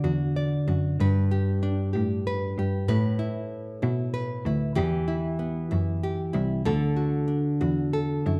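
A bright, fingerpicked nylon-string guitar and a single bowed cello begin together in this heartfelt, romantic six-eight pop ballad excerpt. The guitar sits small and up front, carrying the accompaniment over a Dadd9, G, Asus2, Em and D progression, while the cello holds down the bass with a rich, focused tone, smooth top and vibrato. A wet recital-hall reverb and a dark production frame the pair, with a faint mains hum beneath.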